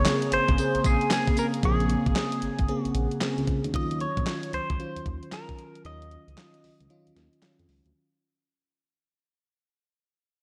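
A twangy, phased clean electric guitar carries the melody up front in this slick, punchy new jack swing cut from a longer piece, set over a thumpy, fat-snared digital drum machine with handclaps and tambourine, a dark, smooth synth bass, a dreamy chorused FM electric piano, and a swirling background pad that drops out at 3.7 s, all bathed in lush arena-sized hall reverb as the groove fades out through a break from 5.8 s.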